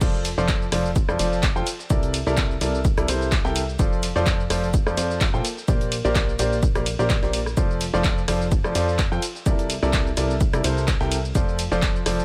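A clear, intimate baby grand piano riff with audible action noise opens this uplifting, feel-good piano house clip together with a plucky, funky analog bass, both pumping against an up-front punchy electronic kick, while an analog drum machine adds handclaps, rim clicks, hi-hats, shaker, ride and crash, and a very quiet, gritty, pitched-up breakbeat kit tucks hi-hat, shaker and snare underneath, all in a dry mix with delay on the piano.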